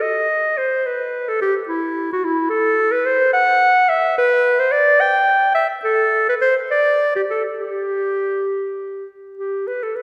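Solemn and introspective, this short excerpt from a baroque-style classical fantasia features a single clear, close-miked clarinet playing up front in 6/8 with rubato, its line spanning E4 to G5 across the full 10.0 seconds, set in a wet concert hall reverb heard from further back in the room.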